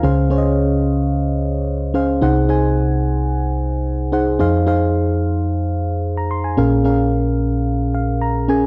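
A mellow FM electric piano plays alone throughout this short, nostalgic and uplifting pop excerpt, its soft, round, dark tone with a fast attack, decaying notes and chorus sitting up front in a dry, close 1970s-style studio sound as it moves through Dbmaj7, Ab7/C, Fm7 and Bbm7 before a brief fill at 7.7 seconds.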